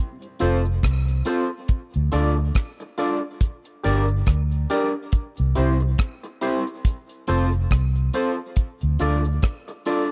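A dry, close 1970s-style studio sound frames this uplifting roots reggae excerpt in F major at 70 BPM with a swung 16th feel, where a deep drum kit with tight kick, hi-hat and rim click sits up front beside a dark, round, foam-muted fingered bass, while a twangy, slightly broken-up electric guitar through tape echo and a hollow, chorused organ stab with a fast attack and a decaying tone move over an F, Dm, Gm, C progression.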